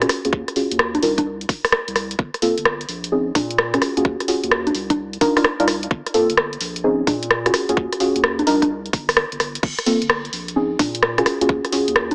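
UK garage in a moody, skippy two-step vein, this brief excerpt rides a swung groove from a punchy analog drum machine with tape-warm congas, crash, hi-hat and rim click, joined at 0.3 seconds by a tight, layered electronic kick sitting up front. Deep, mellow chord stabs, soft and warbling with detuned vintage character, cycle through dark minor eleventh chords, colored by chorus and tape echo under a filter sweep. Beneath them a saturated sub bass adds thick, sustained weight, all set in light digital ambience with a small-speaker sound.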